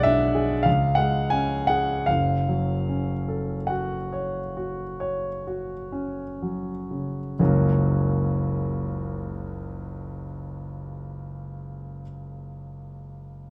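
Mournful and melancholic, this fragment of a romantic classical nocturne for solo piano moves in a slow, rubato 3/4 at 30-52 BPM, easing back over its first 7.4 seconds as the harmony moves from G#dim/B to F#m. A concert grand, intimate and up front with deep bass and audible action noise, spans F#1 to G#5 across its 13.5 seconds. The music brightens to F# major at 7.4 seconds, all set in a moderate recital hall reverb.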